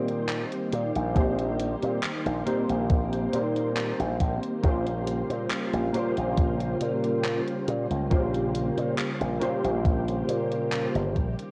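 Through the worn, warbling haze of old cassette tape, this woozy, nostalgic vaporwave excerpt pairs detuned lo-fi synth keys with chorus and tape echo against a silky string machine and a bright, punchy slap bass with an envelope filter, while gated handclaps and hi-hat from an 80s digital drum machine tick along and a thumpy electronic kick joins up front at 1.2 seconds.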